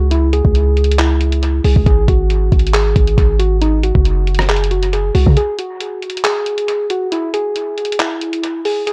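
A deep, boomy 808-style bass anchors this brooding, menacing trap excerpt at 137 BPM in a half-time feel, moving from C#m to G#7(no3) before dropping out at 5.4 s for a break. Muted, felt-like synth keys carry a soft, dark melody with chorus and dub echo, while a lo-fi sampler-style drum kit of thumpy kick, handclaps, hi-hat and rim click sounds compressed, pitched down and muffled under its own dub echo. The mix is dry of reverb but heavy with echo, with all three parts sitting up front.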